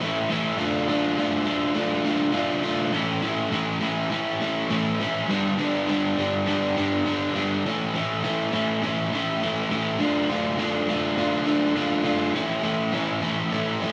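A crunchy, overdriven electric guitar opens this wistful, jangly rock excerpt on its own, picked and double-tracked up front as it moves through A, D minor and G chords in a straight 4/4 feel. Its tone is warm, with a softened top end, and it stays alone for the full 13.9 seconds. A moderate studio reverb and the feel of a band playing live in one room give the sound a close, natural air.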